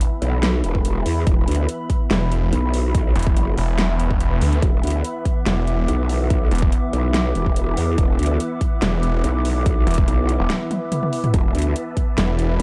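Chaotic and aggressive, this heavy wobble dubstep excerpt moves at 143 BPM in 4/4 with a half-time feel, tuned slightly sharp. A growling, wobbling growl bass enters at 0.2 seconds, saturated and chorused with a formant-filtered edge, and at 2.1 seconds a snarling distorted saw bass joins it up front, bright and detuned with a moving notch. An overdriven electronic kick drum, punchy and re-recorded in a small room, sits alongside a dubstep drum kit with a huge snare, metallic hats and toms. In the background, huge, lush supersaw chords carry phaser, 12-bit sampler grit, sidechain pumping and a low-pass filter, while a warbly, nostalgic, lo-fi pad adds a dark, chorused haze with its own reverb. A brief break opens at 10.5 seconds, with a drum fill arriving at 10.7 seconds, and the digital ambience carries a faint mains hum.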